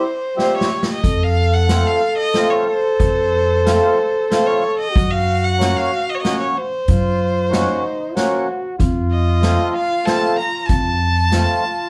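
A bowed violin with smooth vibrato carries the melody from the start over a punchy trombone second line with slapback echo and a reedy, mellow accordion, in a bittersweet, festive klezmer tune in 3/4 at 93 BPM in F phrygian dominant that gradually speeds up. A street-band drum kit with a boomy kick and airy room sound plays a fill from 0.4 to 1.0 seconds, and at 1.0 seconds a woody pizzicato upright bass enters as the harmony moves from C to F, later shifting to Gb and back to F. The whole ensemble sits in a wet studio reverb, heard from further back in the room, in this short cut from a longer piece.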